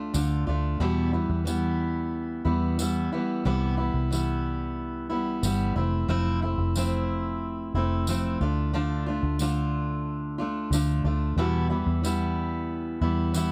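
At a relaxed 91 BPM in a straight 4/4, this carefree acoustic pop excerpt pairs an up-front, full-bodied fingerpicked steel-string guitar, its finger squeaks audible, with a round, punchy foam-muted vintage electric bass and a jingly tambourine set back in a small room, all in a dark production with light reverb over chords moving from Dm and Em through Cmaj7 and Fmaj7.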